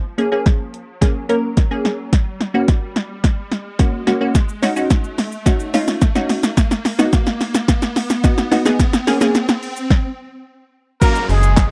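A summery, euphoric dance-pop build-up opens with a riser and downlifter in the background, as a detuned wavetable chord stab with sidechain pumping and a layered deep house drum kit, its deep kick and punchy snare up front, enter at 0.2 seconds over a drum fill that runs to 9.9 seconds. After a stop, a clear horn section with light vibrato and slapback echo takes the melody at 11.0 seconds, and a snappy FM bass with a metallic attack arrives at 11.3 seconds, pumping beneath it. The sound is dry and close, like a 1970s studio recording, and the passage is cut from a longer piece.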